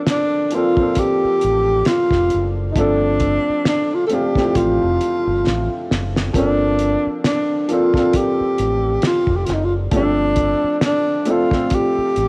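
Sultry and introspective, this slow 67 BPM neo-soul R&B excerpt in G minor swings gently as a breathy, whispered tenor saxophone carries the melody up front over woody upright piano, cloth-damped thuddy drums with a fat snare and gritty lo-fi muffle, and a deep, round fingered electric bass that enters at 1.2 seconds, all moving between Gm11 and Dm7/G with a drum fill at 5.4 seconds in a small, lightly reverberant room on cassette tape.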